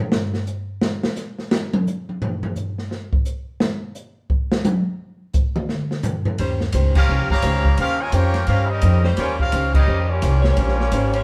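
Energetic and brassy, this big band swing passage, cut from a longer piece, opens with the open jazz drum kit playing alone as a solo until 6.4 seconds, its dark cymbals, medium-tuned snare and boomy kick sounding smooth and up front. At 6.4 seconds the band arrives on an Eb13 chord: a woody, pizzicato upright bass sits forward in the mix, a boxy fingerpicked archtop guitar adds accompaniment with audible finger squeak, and a clear saxophone section holds sustained chords in the background with light vibrato. The trumpet section takes the melody at 7.0 seconds with a clear jazz tone, joined by a muted trombone section whose straight mute gives a nasal, brilliant, vintage colour to its second line. Band accents punctuate the swing feel, and the group plays live together in one room under a moderate studio reverb.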